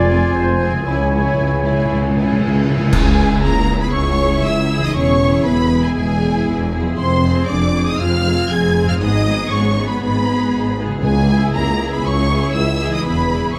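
Moving in a straight 4/4 at 118 BPM, this swashbuckling, adventurous slice of heroic adventure film score opens with a brief burst of woodwinds and brass. A mellow concert flute, a warm oboe, a clear solo clarinet and a dark, roomy trumpet section all sound only in the first few seconds, while quiet timpani played with medium mallets fill from 0.9 seconds. At 2.9 seconds the full band hits an accent, marked by dark clash cymbals and concert bass drum, and the music settles into its longer second section. Throughout, a dark, distant violin section carries the expressive melody high above a clear, focused second violin line and lush viola accompaniment. A close-miked French horn section holds mellow sustained chords, a bright concert harp rings out very quiet fingerpicked arpeggios, and a soft-attack cello section and a smooth, even double bass section anchor the low end. The harmony moves from F minor through C-sharp minor, E and G-sharp minor, with the timpani returning briefly at 11.0 seconds, all set in a moderate recital hall reverb.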